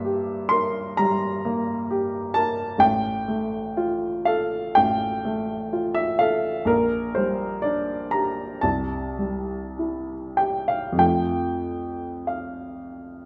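A warm, natural baby grand piano sits up front in a wet recital hall, its notes carrying a short sustain before the reverb takes over. This dreamy, serene romantic nocturne in F major moves with a rubato feel between 46 and 66 BPM in 4/4, the solo piano spanning A1 to C6 across a brief 13.3-second excerpt cut from a longer piece. The harmony drifts from Gm69 through F/A, Gm/Bb and C before settling on F at 11.0 seconds.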